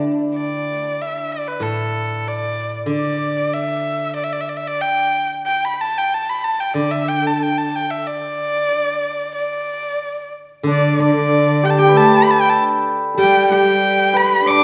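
Pastoral and graceful, this short cut from a longer Chinese traditional chamber piece moves at a loose, rubato 94 BPM in 2/4, set in the D zhi mode. A rich, focused erhu carries the melody from 0.3 seconds, bowed up front by a single player with vibrato and portamento and a boxy edge. Beneath it a bright steel-string zither, played with fingerpicks, rings out a silvery accompaniment throughout, while a hammered dulcimer adds a shimmering second line at the very start and returns at 10.7 seconds. At that point the music shifts into a new section, and a warm cello played by one player joins as another second line, bowed sul tasto with a soft attack and a pure, floating, smooth tone. The ensemble sits in the wet reverb of a recital hall, giving the whole piece a spacious, resonant glow.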